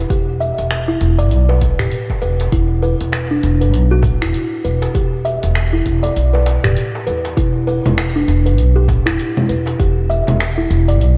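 A woody, pizzicato upright bass with sidechain pumping opens this hypnotic organic downtempo excerpt at 99 BPM in E minor, joined by mellow, hollow-toned kalimba arpeggios with delay, a tape-warm electronic kit of cabasa, congas, finger snaps and swung hi-hat, a deep layered electronic kick that drops out from 6.2 to 7.4 seconds, and a soft-handed clay-shell darbuka, all in a light reverb.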